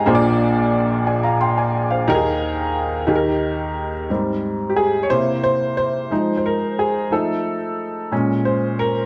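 In a lilting 6/8 metre with a straight feel, the pulse moves at 60 beats per minute counted in dotted quarters, giving this short gospel passage in Ab major an unhurried, hopeful sway. A single baby grand piano carries everything alone, spanning from a deep Bb1 up to C6, its tone clear yet slightly worn, open and sitting up front with a long sustain that lets each chord ring. The opening stretch leans on suspense, moving from Bb7 through Ebsus4 to a resolving Eb, before a new section arrives at 4.1 seconds on an Abmaj7. From there the harmony moves through C7, Fm7 and F7 to land on Bbm7, lifting the mood toward something uplifting. A moderate recital-hall reverb surrounds the piano within a dark, warm production, and the clip, lifted from a longer piece, ends after about 9.1 seconds.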